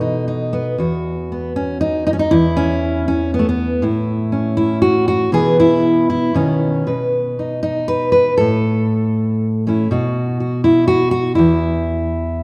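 Folk music for a single fingerpicked steel-string acoustic guitar, this brief passage, cut from a longer piece, feels pastoral and peaceful, moving in a loose, rubato three-beat metre. The dreadnought guitar sounds dark and full-bodied, sitting up front, and finger squeaks on the strings are audible. Its lines span from low E2 up to B4, drifting through chords such as Esus2, A, Bsus4 and B, with brief unharmonized moments along the way. The instrument is bathed in a wet concert-hall reverb with a two-second tail, giving it the spacious resonance of a church or concert hall. The guitar plays alone for the full 12.4 seconds.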